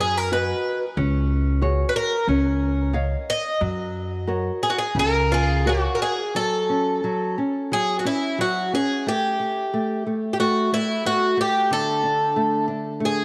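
A bright, shimmering twelve-string acoustic guitar carries the octave-doubled melody of this longing, mournful fado-style ballad at a loose, rubato 90 BPM, over dark fingerpicked nylon-string accompaniment and a woody pizzicato upright bass that drops out at 5.9 s, all set up front in a moderate plate reverb as the harmony turns from F# major to F# minor at 6.3 s.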